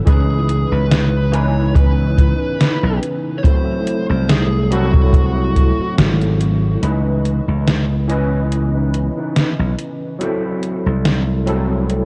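Dark, warm cassette-tape production with light digital ambience frames this hazy, melancholic vaporwave excerpt in C# minor at 71 BPM with a lightly swung 16th feel. A barky, gritty tine electric piano with ensemble chorus, 12-bit sampler grit and tape echo carries the harmony, moving between C#m9 and G#7b9b13/B#. Beneath it sit a bright, punchy slap bass, a boomy acoustic kick that drops out at 5.7 seconds, and an up-front gated 80s drum machine whose overdriven hi-hat and gated-reverb snare sound re-recorded in a small room. A very quiet, warbling detuned pad sustains nostalgic chords beneath a smooth, dark overdriven lead guitar melody with tape echo until 5.9 seconds. After a band accent, a clean, fingered background guitar riff with lush chorus, tape echo and a low-pass filter sweep takes over from 6.8 seconds.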